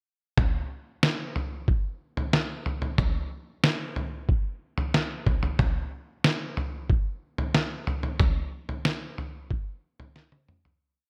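A straight 4/4 pulse at 92 BPM sets this short, complete dream pop piece in motion, with a slow tom and kick pulse carrying an ethereal, floating mood. The lone part is a lo-fi, sampler-style drum kit of kick, snare and toms, entering at 0.4 seconds and sitting up front in the mix. Its sound is pitched down, muffled and compressed, pairing a thumpy kick with a fat snare and a tape-warm character that suggests it was re-recorded in a small room. Gated reverb shapes the drums, while a light reverb and bright 1980s-style digital production surround the whole recording. A fade-out begins at 8.2 seconds, and a drum fill arrives at 10.2 seconds to close the piece.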